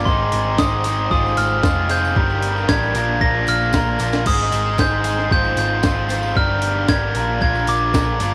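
A straight 4/4 breakbeat from a gritty, compressed sampler-style kit with a thumpy kick, high-tuned snare, hi-hat and crash drives this moody, restless indie rock excerpt, where a sludgy, double-tracked overdriven guitar riff sits up front over a round, dark hollow-body electric bass, a close-miked glockenspiel played with soft plastic mallets rings out a bell-like melody through slapback echo, an airy, breathy chorused pad holds sustained chords in the background, and a very quiet, jingly tambourine adds shimmer, all wrapped in digital ambience as the chords move from Abmaj7 through Fm7/Ab and Gm7 to Bb7.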